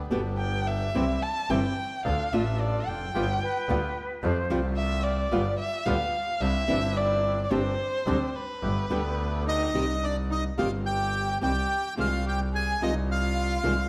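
Dark, reedy bandoneon stabs and a biting bowed double bass open this melancholic, sultry rubato tango at 108 BPM. A fingerpicked flamenco guitar, with audible finger squeak, and an expressive solo violin, rich with vibrato and portamento, join them. A pure, distant concert flute briefly adds a second line at 3.4 seconds. A second bandoneon takes the melody from the background at 9.5 seconds as the music settles into C minor at 9.7 seconds, all within a moderate scoring-stage reverb in this excerpt from a longer piece.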